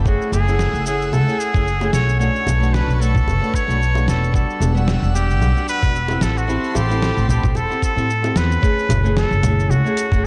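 Smooth and relaxed, this sunset chillout excerpt swings gently in 4/4 over a cycle of minor ninth chords, anchored by a woody, up-front pizzicato upright bass and a thumpy, gritty electronic kick beneath a compressed sampler-style kit of snare, hi-hat, cabasa and congas, with tight, high-tuned bongos tucked into the background. A fingerpicked flamenco guitar with audible finger squeak and delay accompanies a nasal, straight-muted trumpet that carries a jazz-style melody with vibrato, while an airy, breathy pad with chorus sustains soft chords until it drops out at 8.6 seconds. The dark production sits in a small room with light reverb.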